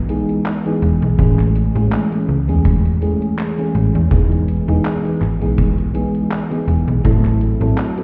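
A snappy FM bass with a metallic attack opens this faded, dreamy vaporwave fragment in E major at 82 BPM, joined almost at once by a lush FM electric piano layered with a soft pad, bathed in chorus and analog delay, and a detuned 8-bit drum machine tapping handclaps and hi-hat with a tape-warm, sampler-style character. A punchy, saturated kick enters at 1.2 seconds, dark yet gritty in a bright stone room, as the chords drift from Emaj7 to Amaj7 and back to Emaj7 before settling on Am6 at 7.0 seconds. The whole mix sounds muffled, as if heard through a wall, with cassette-tape haze and stone-room reverb adding to its hazy blur.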